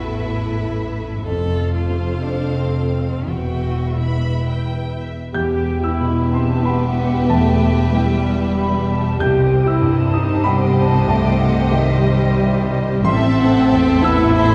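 Longing and bittersweet, this cinematic film-score passage for orchestra moves in a rubato 3/4 at roughly 81-96 BPM in E harmonic minor, cut from a longer piece. A close, expressive solo cello carries the melody with vibrato and portamento for the first 5.0 seconds, while lush violin sections sing a smooth upper melody and a second line above dark, woody violas in the background. A natural grand piano sits up front with accompaniment, and a distant, very quiet cello section joins the double basses to hold the bass. At 5.3 seconds the colour thickens: an airy, hollow flute section and a mellow, roomy clarinet take up second lines, and a dark French horn section sustains chords in the background. The harmony drifts from Asus2 through F and Em to a darker Cm before settling on Amadd9, all set in a wet scoring-stage reverb heard from further back in the room.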